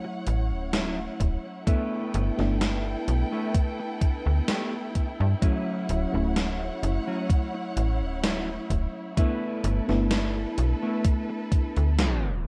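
Opening on a dark, warbling FM electric piano, bowed strings with lush vibrato and a clean fingered electric guitar riff, both keys and guitar touched by subtle chorus and tape echo, this dreamy, woozy vaporwave excerpt at 64 BPM drifts between Dmaj9 and G69 as a snappy, metallic FM slap bass with tube saturation and a gated 80s drum machine of hi-hat and gated-reverb snare join at 0.3 seconds, a thumpy, up-front electronic kick arrives at 1.2 seconds, and the cassette-hazed mix in light digital ambience ends in a tape stop at 12.0 seconds.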